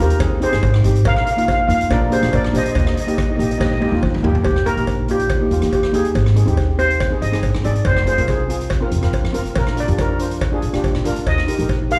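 Carefree and festive, this calypso excerpt moves at 141 BPM in a straight 4/4 in Eb major, heard as a live gig through the venue's PA with club ambience and a light, small-room reverb. Two steel pans played with medium rubber sticks open together, one carrying the melody up front with a shimmering, metallic edge and slapback echo, the other holding down mellow, dark accompaniment chords beneath it. An upright bass plucks a woody, growly, thumpy line with steel-string bite, while a polished street-band drum kit with a boomy kick, medium-tuned snare, hi-hat, rim clicks and toms sits up front with an airy, big-room sound, joined by a cowbell ringing in the background with its own slapback echo. The harmony opens on Ab and passes through Bbsus4 and Bb to Ebadd9 before a drum fill at 3.6 seconds leads into a new section at 4.5 seconds. From there the lead steel pan takes a solo over a cycle of Eb, Ab, Fm and Bb that returns to Eb at 11.3 seconds.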